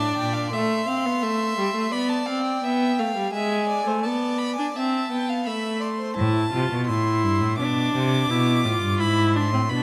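Close, detailed microphones capture a string quartet in a moderate concert hall reverb, giving this solemn, serious baroque-style fugue both intimacy and a sense of space. Cut from a longer piece, it moves at 85 BPM in a straight 4/4 and settles into A minor from 6.2 s. A clear first violin carries the melody high in its range with vibrato and a smooth, even bow. A second violin, more distant and focused, traces its own line beneath it until 6.2 s. The viola sits up front with a rich, vibrato-laden accompaniment in the middle register. The cello, also up front, sounds a brief deep bowed bass at the outset and returns at 6.2 s to anchor the solemn close of the passage.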